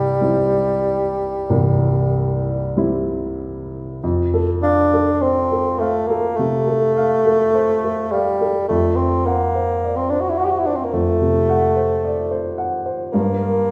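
This is a lyrical, serene romantic classical duo for bassoon and grand piano in F major, moving at a slow 46-55 BPM in 4/4 with a flexible, rubato feel and tuned to A4 = 441 Hz. The bassoon carries the melody from start to finish, its mellow tone shaped by a soft attack and light vibrato in a poised classical style, sitting up front between G3 and G4. Beneath it, a dark baby grand piano provides accompaniment across a broad span from C1 to F#5, its natural sound also placed close. The harmony moves from C to F, and a new section begins at 4.0 s, passing through D7/F at 8.7 s and settling on Gm near the end of this fragment of a longer piece. A wet recital hall reverb, heard from further back in the room, wraps the pair in a gentle, spacious glow.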